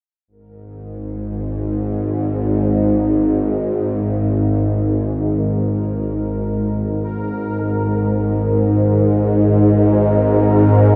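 Dark ambient drone in free time, cut from a longer piece, with a dark, cavernous mood set in a vast, echoing space. A bubbling, resonant texture with random filter steps and chorus sits in the background from 0.3 s, fading in on a G#sus2 chord, while an up-front, bowed-like drone enters at 0.8 s with a tense, nasal, string-like tone, detuned sawtooth layers and vibrato. Both parts sustain under heavy reverb with long releases through to 11.0 s.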